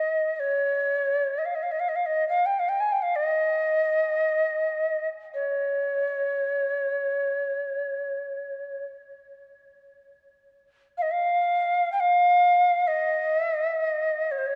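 In a dark, warm production, a wet scoring-stage reverb surrounds this spacious, peaceful excerpt of free-time meditative world music, in which a mellow Native American-style cedar flute plays alone and up front for all 14.6 seconds, its airy wooden tone touched by vibrato, a crisp chiffing attack, rolled-off highs and delay.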